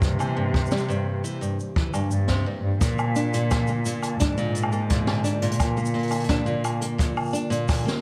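A fingerpicked nylon-string guitar, up front with vintage 12-bit sampler grit and tape echo, spins arpeggios through this playful folktronica fragment at 86 BPM in Bb mixolydian, over a veiled, bowed muted cello bass that stops at 6.9 seconds, boomy kick and high-tuned snare with shaker, hi-hat and woodblock played on brushes, and a nostalgic warbling pad of sustained chords in the background, with a band accent at 2.3 seconds just before the harmony moves from C7 to Bb at 2.8 seconds.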